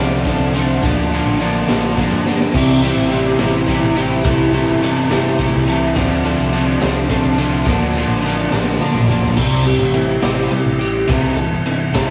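Indie rock in 6/8 at 70 BPM in C mixolydian, this upbeat, jangly fragment of a longer piece pairs a twangy, compressed twelve-string electric guitar riff with an up-front, crunchy overdriven guitar riff colored by analog chorus, delay and cassette saturation, over a growling, punchy fingered bass and a raw, gritty garage drum kit with a high-tuned snare and dark cymbals that enters at 0.2 seconds and fills at 2.2 and 8.5 seconds, while a very quiet tonewheel organ with key click and fast rotary sustains chords through a Dm7, Bbmaj7, C, Am7 cycle and crisp group handclaps join faintly at 0.6 seconds, all in a lo-fi home cassette recording with light small-room reverb.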